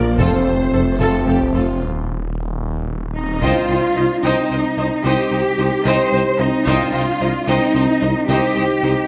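Brooding and tense, this short cut from a longer hybrid orchestral and electronic film score moves at 74 BPM in 6/8, set in C dorian. A rich studio violin section carries the melody for its first 1.8 seconds, over a mellow French horn section holding sustained chords in the background and a solo tuba anchoring the bass. Alongside them, a snarling distorted saw bass growls with an aggressive, detuned, compressed edge until 3.4 seconds. From 0.2 seconds, a lush symphonic violin section adds a soft second line in the background, a clear viola section fills the accompaniment from a distance, and an up-front cello section sits at the core. A very quiet trombone section, a double bass section and a distant taiko ensemble on heavy sticks join in, and the harmony shifts from F to Cm/Eb and then Cm as a break gives way to a second section. A recital hall reverb gives the whole ensemble a wet, spacious glow.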